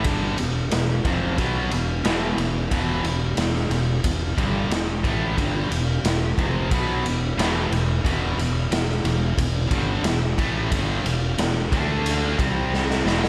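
This menacing, aggressive hard rock excerpt opens with everything at once: two guitars, bass and drums start together at 0.0 seconds on a straight 90 BPM groove in E minor. A cranked stack guitar with overdrive and a distorted electric guitar touched with slapback echo both play picked riffs from low E up to D, sitting bright in the background, with the distorted guitar also compressed. Beneath them, a fuzz fingered electric bass growls with punchy, overdriven grit, anchoring the riff in the low register. The raw garage drum kit stands up front, its punchy kick, medium-tuned snare and ride cymbal carrying a dark, smooth, rolled-off top in a bright stone room. The harmony rests on E minor before moving to D5 at 11.7 seconds and C5 at 12.4, with a drum fill from 12.7 seconds closing the passage, all framed by light reverb and small room ambience.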